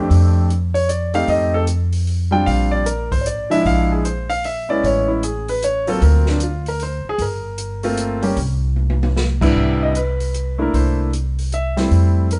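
Heard through moderate studio reverb with the band playing live in one room and the highest frequencies trimmed away, this sophisticated, swinging jazz piano trio, cut from a longer piece, moves in 3/4 at 152 BPM in F major: a clear, intimate grand piano with audible action noise and long sustain carries the melody up front over a woody, thumpy pizzicato upright bass with steel strings, while a smooth acoustic kit with a rolled-off top, dark cymbals and a boomy kick sits lower in the mix, adding a fill at 8.8 seconds ahead of a new section at 9.6 seconds, as the harmony passes through F9, Bb69, Amaj9, D7alt and Gm11 before giving way to an unharmonized stretch.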